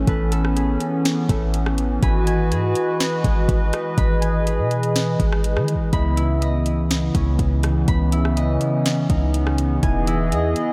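Atmospheric cloud-rap at 123 BPM in a half-time feel, floating and blissful, with a hollow, flute-like pad holding sustained chords through chorus and sidechain pumping over a deep, boomy 808-style bass, while a fingerpicked concert harp rings out arpeggios into a diffuse ambient delay. A tape-warm, smooth R&B drum kit with a soft kick, sharp snare, rim click and warm hats enters at 0.1 seconds, and a very quiet overdriven tine electric piano adds gritty, barky texture through a combo amp. The dreamy mix is soaked in huge ambient reverb as the chords move from Amaj9 through G#m7 and C#m9 to Emaj7 in this short cut from a longer piece.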